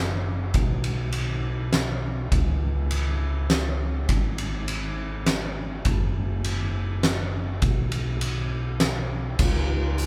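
A growling, overdriven fingered electric bass opens this melancholic, cinematic post-rock excerpt at 102 BPM in 3/4, joined at 0.5 s by an oversized, low-tuned acoustic drum kit, up front and gritty, with a boomy kick, fat snare, dark cymbals and a pumping big-room sound, as the band plays live together in one room under light reverb.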